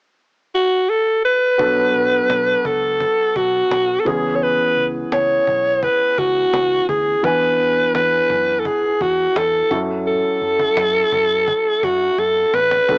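A breathy alto saxophone leads this 1980s-style pop cut, entering at 0.5 seconds up front with a bright, raspy tone, vibrato and scooped notes as it sings a pop-style solo line between F#4 and C#5. The mood is glossy and uplifting at 85 BPM in straight 4/4, and after a brief unaccompanied opening the band joins at 1.6 seconds as the harmony moves through Bm7, C#m7, E7 and F#m7. A dark, mellow concert grand piano fills out the accompaniment with deep bass notes, while a round, foam-muted vintage electric bass sits punchy but in the background. A close, woody cajon played with hard hands and faint snares keeps time and closes with a fill at 12.2 seconds. Light reverb and a cassette home-recording character give the piece a small-speaker sound, with tape coloring the saxophone and cajon in particular.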